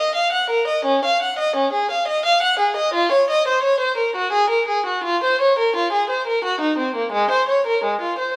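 In a rubato 3/4 at 86 BPM, this flowing, introspective baroque-style suite movement for unaccompanied violin unfolds across 8.4 seconds cut from a longer piece, tuned to A4 = 436 Hz. A single bowed violin carries it alone from Ab3 to Gb5, its period-style gut-string tone nasal and reedy with light vibrato, sitting up front yet with a distant cast. A wet stone room reverb surrounds the playing.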